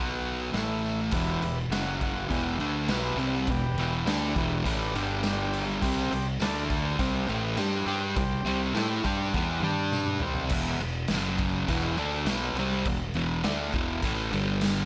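Swaggering and raw, this garage rock clip in E minor struts at 102 BPM, with an up-front, double-tracked fuzz guitar riff over an overdriven fingered bass, a gritty drum kit with a punchy kick that enters at 0.5 s, a jingly, distant tambourine, and a reedy combo organ holding sustained chords in the background until a drum and organ fill at 9.3 s, after which the organ drops out at 10.5 s, all set in light reverb.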